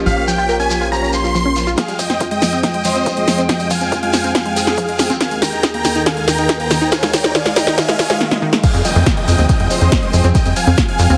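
Heavily compressed, radio-like sound with light reverb frames this soaring, euphoric uplifting trance excerpt in F minor at 140 BPM, where a huge, detuned supersaw lead with delay carries the melody over lush unison plucks, floating bowed strings, a grainy shekere in the background and a brief opening line on a brilliant grand piano with 12-bit grit and tape echo, while a tight sawtooth sequencer bass falls away for the build-up, an analog kick and a punchy drum machine with crash, hi-hat and snare enter at 1.8 s, very quiet risers and downlifters arrive at 4.1 s, and the lead, plucks, strings and bass pump to the sidechain into the drop at 8.6 s, when the bass returns.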